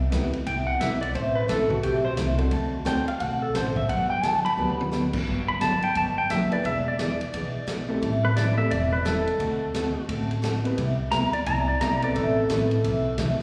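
A dark, clean lap steel guitar carries the melody up front from 0.5 to 5.2 seconds before a twangy, compressed pedal steel guitar with volume swells takes over at 5.5 seconds in this down-home, swinging western swing piece at 174 BPM in G major, backed by a woody, thumpy upright bass, a brilliant vintage upright piano and a full-bodied picked jumbo acoustic guitar with finger squeak, both touched with slapback echo, and a vintage drum kit with dark cymbals, a punchy kick and a drum fill at 4.6 seconds, all heard as a live gig through the venue's PA with recital hall reverb.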